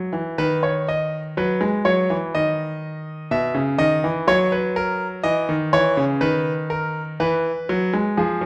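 A bright concert grand piano plays alone from the start, performing a baroque-style two-part invention in B major at a measured 62 BPM in straight 4/4. The mood is solemn yet driving, with the piano moving from B/D# at 0.4 seconds through a rootless Badd11 and an F#7 before settling back on B/D# near 6.2 seconds. The instrument spans B2 to E5, its brilliant, polished upper notes set against a deep bass, and its short sustain keeps each line crisp and distinct. Placed up front and present, the piano sits in a moderate recital hall reverb that lends a sense of space around the notes. Tuned to A4 = 439 Hz, this brief passage of about 8.5 seconds is cut from a longer piece.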